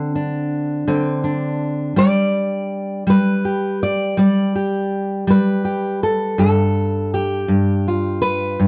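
Rollicking and swaggering, this short excerpt of acoustic country blues in a straight 12/8 features a lone fingerpicked steel-string acoustic guitar, dark and woody with old strings and an up-front auditorium presence in light reverb, moving from a D7 chord to G within its 8.7 seconds.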